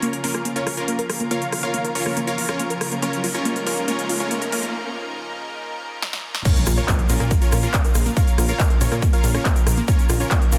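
A straight 4/4 pulse at 140 BPM drives this emotional, bittersweet uplifting trance excerpt in Bb minor. It opens on a Bbm chord with a build-up: a bright, airy supersaw stab melody with dub echo, a thick chorused unison pad, and a detuned unison pluck playing arpeggios in the background under a filter sweep, while an overdriven dance kit of crisp hats, punchy snare, handclaps, rim clicks and cymbals, its hats and cymbals pumping with sidechain, plays on as a background riser climbs to a break at 4.7 seconds. At 6.5 seconds the drop lands with an impact, a punchy, overdriven kick up front and a grainy egg shaker, and a funky, plucky analog bass joins just after, all sitting in a dense, heavily limited modern master with light digital reverb.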